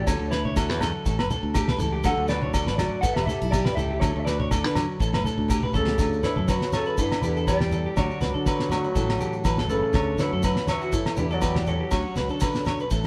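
Heard through a moderate stone-room reverb with the band playing live together, this sunny, joyful highlife guitar band excerpt sets a mellow, dark, clean electric guitar melody over a full-bodied picked steel-string acoustic guitar with finger squeak, twangy, slightly broken-up lo-fi arpeggios from an electric guitar through a small old amp, a bright, punchy fingered electric bass, a cloth-damped thuddy drum kit with a fat snare and tight kick, ringing agogo bells, grainy distant maracas and low-tuned thick-skinned congas, while during a drum fill a raspy, growling trombone with vibrato enters at 5.8 seconds to add a gritty second line in the background.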